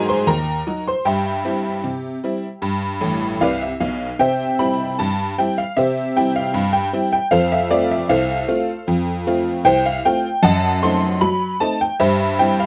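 A jangly, metallic tack piano plays solo and up front in this playful, jaunty ragtime excerpt at 77 BPM in a straight 2/4 and C major, its bright, percussive vintage tone sitting in light reverb within a dark production, with a honky-tonk fill at 3.0 seconds leading into a new section at 4.2 seconds that runs to 12.7 seconds.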